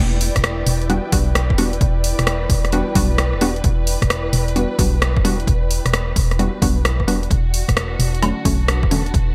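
Bouncy and soulful, this short cut of two-step UK garage swings at 131 BPM in E minor, moving from Em7 to Bm7/E at 7.3 seconds as a hollow, organ-like FM bass and an ethereal pad with chorus, reverb, tremolo and sidechain pumping start at once alongside a pumping, bowed violin section holding close, vibrato-rich chords, while house hi-hats, rim clicks and woodblock under gated reverb arrive at 0.2 seconds, a punchy electronic kick joins at 0.4 seconds, and detuned sawtooth chord stabs with chorus and delay cut through the bright 1980s-style digital sheen.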